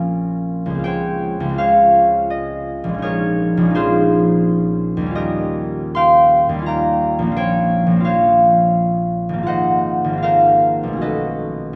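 A concert harp plays alone throughout this short classical excerpt, its fingerpicked strings ringing up front with a warm, acoustic tone across a range from Ab1 to C6. The mood is serene and graceful, set in a triple metre whose beats fall unevenly, the phrasing stretching and yielding in a free rubato. Lush extended harmonies drift past, moving from Bbmadd9 through Dbmaj7 and Eb9, returning to Bbmadd9 before closing on Ab13 and Cb9. A wet church reverb with a long 3.0 s decay surrounds the instrument, letting each chord hang in a spacious, resonant church. The tuning sits slightly below modern concert pitch, at A4 = 436 Hz, and the passage is clearly cut from a longer piece.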